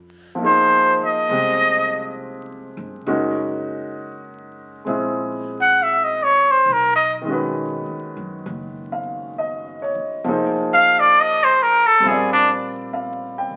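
Late-night and tender, this slow swung jazz ballad at 67 BPM in 4/4 drifts over Fm9, Gb9 and Badd9 harmonies, tuned slightly sharp to A4 = 444 Hz, in a short section cut from a longer piece. A straight-muted trumpet takes the solo up front with a bright, nasal, breathy tone and vibrato, while a clear, intimate baby grand piano accompanies with audible action noise and a woody pizzicato upright bass sits in the background. A wet studio reverb and the crackle and dull top end of a very old 78 rpm record give the sound a dusty, vintage cast.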